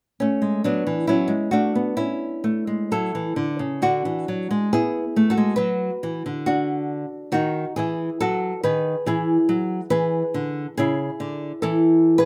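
A lone nylon-string guitar, fingerpicked with a small, up-front acoustic tone, carries this radiant, dance-like baroque-style classical excerpt in A major, moving at a rubato 68 BPM in 4/4 across a range from C#3 to B4. The harmony travels from A through Bm/D and Emaj9/D# to E7 at 9.1 seconds, settling on A/C# at 10.8 seconds before the fragment stops at 12.3 seconds. A light reverb gives the close guitar a gentle sense of space.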